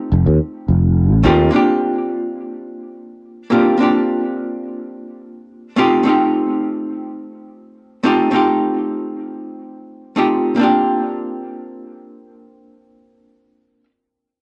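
Heard through a home cassette recording with a moderate studio room, this blissful, smooth sunset chillout piece in Bb major moves at 106 BPM, where a growly, bright fretless electric bass with tube saturation and lush chorus sits up front only from 0.1 to 1.5 seconds, while a dark, clean, hollow-body archtop guitar, picked and given analog delay and plate reverb, carries the accompaniment through to 13.9 seconds over chords shifting between F7 and Bb69.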